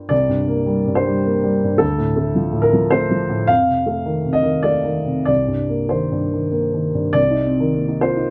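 Close, detailed miking and a light reverb put a dark, boxy concert grand piano up front in this intimate, wistful neoclassical minimalist fragment, which is cut from a longer piece: a solo in a rubato 3/4 with deep bass and short sustain, moving through Dm7, F7 and Cm7 over its 8.3 seconds.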